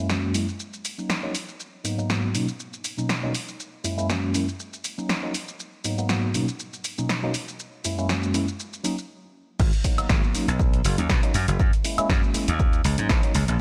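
Filtered disco house at 120 BPM in G# minor, with a 16th-note swing and a nostalgic, sensual mood, cut from a longer piece. A clean tine electric piano through a combo amp carries the F#9, D#m7, G#m9 and Bmaj9 chords with tremolo, phaser, sidechain pumping and a filter sweep, over an analog drum machine of snare, hi-hat, shaker, woodblock and crash cymbal re-recorded in a large room. After a brief stop at 9.1 seconds, the drop at 9.6 seconds brings in a bright, amped slap bass and a punchy electronic kick, with every part up front in light reverb.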